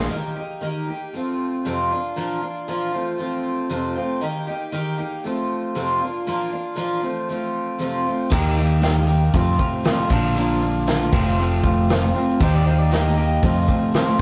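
A bright, shimmering twelve-string acoustic guitar carries the opening of this nostalgic, open-road folk rock and heartland rock excerpt, its octave-doubled, full-bodied picking cycling through Eb, F and Bb chords. At 8.3 s a growly, round fingered bass, a slightly broken-up electric guitar riff with spring reverb, and a distant, roomy drum kit played with bundle sticks enter, joined soon after by a very quiet, jingly tambourine. A mellow harmonica with scooped notes adds a brief second line from 12.4 s, all set in a stone room with a rough rehearsal-room feel and tube saturation.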